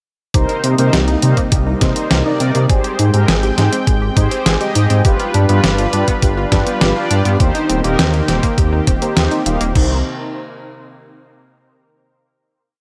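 A cinematic, nocturnal synthwave piece in C minor at 102 BPM, moving through Cm7, Abmaj7, G7 and Eb6 before settling on a final Cm7 chord at 9.8 seconds. A lush, thick unison pad with chorus and sidechain pumping sustains the chords, its detuned sawtooth tone warbling with a vintage character. Beneath it, a deep, rumbling detuned saw bass sits up front, jumping octaves and pumping with the sidechain, while a bright, round analog pluck with chorus and tape echo cycles an eight-step arpeggiated sequence in the background. A mellow synth brass, brassy and dark with vibrato, chorus, tape echo and a gritty vintage 12-bit sampler texture, punctuates the harmony with dotted-rhythm stabs in close voicing. The drums pair a thumpy electronic kick with a detuned 8-bit drum machine supplying closed hi-hat, a medium-tuned snare backbeat and crash, both tape-warm and re-recorded in a small room, all set in light reverb.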